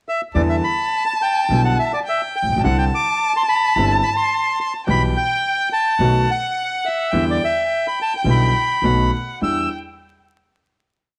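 Tango with a melancholic, sultry rubato feel, in which a reedy, bright bandoneon carries the motif-based melody up front while a warm, expressive bowed violin sings a soft-edged counter-melody with vibrato and portamento; a woody, thumpy pizzicato upright bass on gut strings and a clear, smooth grand piano with short sustain both mark the tango rhythm in two, and the bandoneon, violin and piano carry a cassette tape colour, heard through moderate spring reverb, small-room ambience and vinyl crackle on a home cassette recording that settles onto a final chord at 9.4 seconds.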